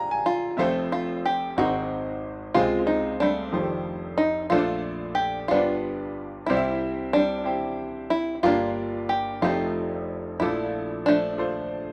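Uplifting and jubilant, this brief gospel clip from a longer piece moves at 61 BPM in a straight 6/8 in F major, with an up-front, fingerpicked open-back banjo carrying a twangy, plunky melody through tape echo over a clear, vintage grand piano whose short-sustain chords drift through rich harmonies such as Fmaj7, Dbmaj7 and F13, all set in light reverb within a rough home demo mix.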